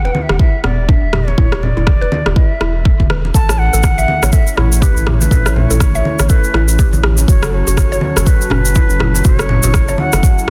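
Hypnotic and spiritual, this afro house excerpt rides a swung groove built on a deep, up-front electronic kick and a layered electronic rim click, both tape-warm and touched with studio reverb, the rim click carrying a little soft clipping. A bamboo-toned bansuri carries the melody from the start, airy and unsteady with vibrato and tongued notes, its highs rolled off and a digital delay trailing behind it. Beneath it, a round, dark analog bass pumps with sidechain, while a woody, mallet-like synth pluck plays arpeggios in the background, shimmering through chorus, phaser and delay as a filter sweep runs across it for the whole passage. Soft-handed congas sit back in the mix with a vintage, band-limited character. At 3.3 seconds a smooth, warbling analog pad arrives with lush chorus and sustained chords, alongside a grainy, bright tube shaker heard close and dry, as the harmony moves from Em7 to A and then F#m in a dense, heavily limited modern master.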